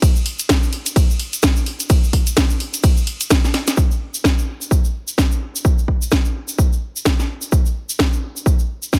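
House groove at 128 BPM in 4/4 with a swung sixteenth feel, swaggering and bouncy, cut from a longer piece and built entirely from percussion. A punchy, overdriven electronic kick sits up front beside a layered house kit of hi-hat, ride and cracking snare, both re-recorded in a large room, while a grainy, bright tube shaker adds live-room texture. The opening drop runs to 3.8 seconds, a drum fill lands at 3.5 seconds, and the mix stays dry throughout.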